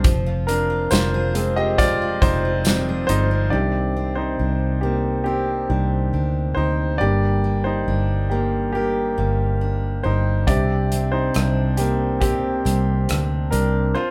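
Emotional and melancholic, this slow pop ballad in C minor moves at 69 BPM in a straight 4/4 and is cut from a longer piece. An intimate concert grand piano leads throughout, up front with deep bass, long sustain and audible action noise, while a full-bodied steel-string dreadnought guitar plays picked arpeggios beneath it. A dark, round, foam-muted electric bass sits punchy and close, and an acoustic drum kit with a tight kick, medium-tuned snare, hi-hat and rim click plays the opening, drops out at 3.3 seconds and returns at 10.5 seconds. A very quiet, jingly tambourine adds a brief shimmer in the opening bars. The harmony drifts through Fm, Cmadd9 and Gm, and the band sounds as if it is playing live together in a modest studio room with a short, natural ambience.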